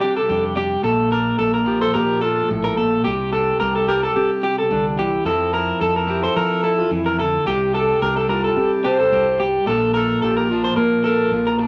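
A lightly swung sixteenth-note groove drives this joyful, danceable highlife guitar band passage, cut from a longer piece, where a breathy alto saxophone with light vibrato and a smooth top sings the pop-style solo melody over an up-front, slightly broken-up picked electric guitar accompaniment, a twangy second electric guitar spinning high arpeggios, and a round, punchy fingered bass, all moving through Csus2, Bbmaj7 and Fmaj7 in a wet small room.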